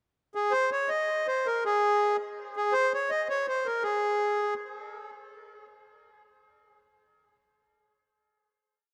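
Charming and nostalgic, this brief musette waltz in Ab major moves at 162 BPM in 3/4 with a light swing and rubato feel, as a lone reedy, single-reed, dry-tuned accordion sits close-miked and up front from 0.4 to 4.5 seconds, spinning a clear, full, motif-based melody in sentence-like phrases touched by tape echo, all inside a lush hall reverb and a rough home-demo mix that closes on a final hit at 5.0 seconds.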